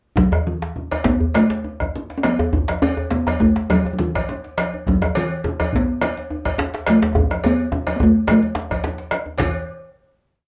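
Captured in a small, moderately reverberant room, this brief, earthy and driving West African drum ensemble piece gradually speeds up as an up-front, short-ringing talking drum sings motif-based call phrases over a deep, dark, band-limited bombo, bright thin-skinned congas with a compressed, saturated edge, a background djembe in a steady, even pattern and a tight, cracking lead djembe, with a distant metallic cowbell bell pattern joining at 0.9 seconds and a drum fill from 7.2 seconds leading to a final note.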